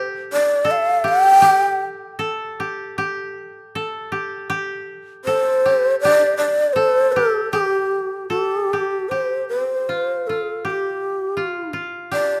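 A breathy, close-miked shakuhachi with a crisp, chiffy attack and expressive vibrato opens this calm, austere fragment of Japanese chamber music alongside a bright, woody koto played with fingerpicks, then falls silent at 1.8 seconds and returns up front at 5.2 seconds to carry the melody over the koto's second line, all in a rubato 2/4 around 73-82 BPM with light reverb and detailed, intimate sound.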